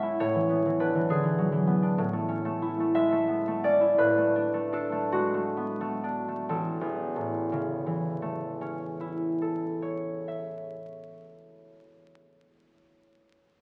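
Peaceful and serene, this short classical excerpt for solo concert harp moves in a rubato 6/8 in A major, drifting between about 40 and 68 beats per minute and slowing from 1.1 to 6.5 seconds. The fingerpicked harp sits up front, ringing across a span from A1 to F#5 through chords that settle from E7 over A back to A at 6.5 seconds before a contrasting second section. A recital hall's lingering reverb surrounds the instrument's acoustic glow, while the crackle of a very old 78 rpm record lends an antique veil.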